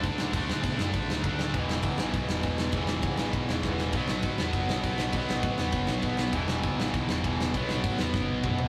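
Punk rock with a rebellious, energetic drive, this short cut from a longer piece pairs an up-front, double-tracked overdriven electric guitar riff with a high-gain distorted guitar set in the background, over a growly, punchy picked electric bass and a big, mid-forward acoustic drum kit with a tight kick, toms and crash cymbal, moving through D5, E5 and B5 chords with drum fills at 3.6 and 8.1 seconds in a rough rehearsal-room sound with moderate booth ambience.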